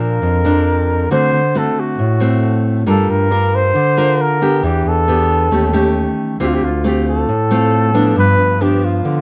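A straight 4/4 bossa nova groove at 136 BPM sets a sunny, relaxed mood through this brief 9.2-second fragment of a longer piece, moving through Bb, D7, Gm7, Em7, Eb7#11, Dm7 and G7. Up front, a mellow, vintage-toned flugelhorn carries the jazz melody with vibrato and scooped notes, while a warm nylon-string guitar, fingerpicked in a classical manner, supplies the accompaniment. Beneath them, a mellow bass clarinet with vibrato holds the low line, all captured by close, detailed microphones in a dry, intimate sound.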